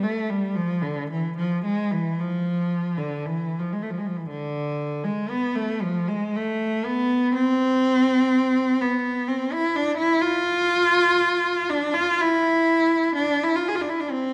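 A rich, focused solo cello, bowed with vibrato by a single player and placed up front, carries this lonely, meditative fragment of a free, expressive classical piece in 3/4, moving with rubato at around 55-64 BPM across a range from D3 to G#4 for its 14.3 seconds, all bathed in the wet reverb of a recital hall.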